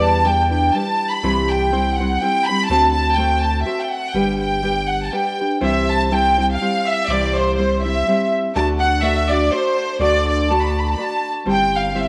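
Mariachi-flavoured Mexican folk in a romantic, proud 3/4 at 123 BPM, where a clear, smooth symphonic violin section with light vibrato carries the melody up front over fingerpicked classical nylon-string guitar and a deep, thick sub bass with transformer saturation, all bathed in a wet echo-chamber reverb and tape saturation as the key moves from G major to C major at 5.6 seconds in this excerpt from a longer piece.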